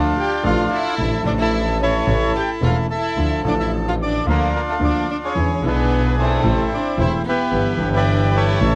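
A reedy, vintage-toned bandoneon carries the melody up front in this dramatic, sultry tango fragment with a free rubato feel, while a small bowed violin section adds an expressive second line rich in vibrato and portamento, a clear grand piano with deep bass supplies the accompaniment, and a distant, smooth bowed double bass anchors the low end, all captured with close, detailed microphones in a dry room.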